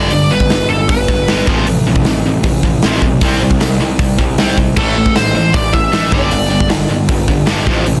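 A dry, dense and heavily limited mix opens this raw, aggressive punk rock excerpt at 155 BPM in a straight 4/4, with a double-tracked, bright distorted electric guitar riff and a growly, fuzz-soaked picked bass driving through chords moving from G to F/A, C5, Am and G5. A big acoustic rock kit sits up front with a punchy kick, a medium-tuned snare, hi-hat and crash cymbals that glint. A lead guitar through a small cranked amp adds a short overdriven, tape-echoed melody at the start and returns at 4.8 seconds.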